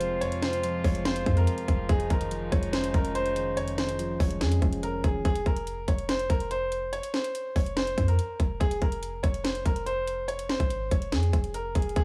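A trap drum kit sits up front, with a hard-clipped kick, sharp snare and metallic hats setting a half-time feel under this dark, melancholic hip hop cut from a longer piece. A smooth, vintage grand piano carries the melody through a tape echo over a deep, boomy 808-style bass, while soft, round electric-piano-like synth keys with chorus and a distant, muted French horn section holding sustained chords both drop out at about 5.2 seconds. The sound is dry and gritty, with a small room ambience.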